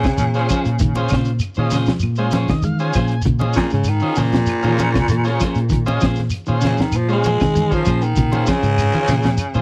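Hypnotic and defiant, this afrobeat excerpt moves at 98 BPM in a straight 4/4, sitting on a single Bbm9 chord in Bb minor across its 9.6 seconds. A raspy baritone saxophone carries the melody as an up-front solo throughout, its gritty, punchy tone shaded by vibrato and scooped notes while still sounding distant and roomy. Beneath it, a round, dark fingered electric bass enters at 0.2 seconds, and a saturated breakbeat drum kit with a punchy kick, high-tuned snare and rolled-off top drives the groove alongside grainy shekere, bright thin-skinned congas and woody claves tucked in the background. Two clean electric guitars sit back in the mix, one twangy and fingered playing arpeggios, the other picked and playing stabs higher up. A buzzy overdriven combo organ with heavy vibrato joins at 0.3 seconds for accompaniment and adds a brief fill between 2.0 and 3.3 seconds. The recording is dry and close, with little reverb, in a 1970s studio style.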